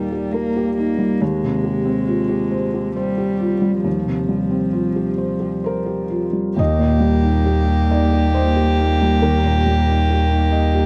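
A rubato pulse in 3/4 carries this hopeful, intimate neoclassical piece for piano and strings, cut from a longer work. A felt-muted upright piano sits up front with a mellow, vintage tone and audible action noise, while a single cello bowed sul tasto adds a second line with an airy bow and light vibrato. At 6.6 seconds a distant, floating violin enters on a pure melody note and a deep, punchy sine sub bass with a pitch-drop attack joins beneath, set in a dry, close 1970s-style studio sound with light reverb.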